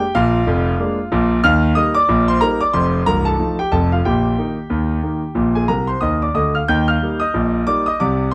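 A clear concert grand piano plays alone from the opening, carrying a cheerful, lively ragtime tune in Eb major at 92 BPM in 2/4 with a light swing on the sixteenths. The piano sits up front with an open tone and a deep bass, moving through a Bb7, Eb, F7 and Bb progression before a short fill from 5.7 to 6.7 seconds resolves onto Eb. Light reverb surrounds it in a dark, warm production, and the passage is cut from a longer piece.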